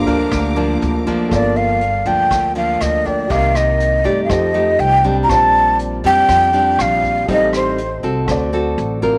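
A melancholic, smooth bossa nova in G minor at 120 BPM opens with a grand piano solo, set in the background with long sustain and deep bass, alongside a full-bodied, fingerpicked nylon-string guitar up front, a woody, growly pizzicato upright bass and lush, bowed symphonic strings that hold sustained chords only until 1.3 seconds. A vintage brush drum kit, with a punchy kick, hi-hat and rim click and a rolled-off top, keeps straight 4/4 time underneath. At 1.3 seconds a breathy, mellow jazz flute takes the melody with vibrato and a soft attack, sitting up front with a slightly unsteady tone until 8.0 seconds. The harmony moves from Gm7 through Cm9, F9 and Bb69 before turning to Am7b5 and D7. Light reverb and small room ambience surround the recording, and the passage is cut from a longer piece.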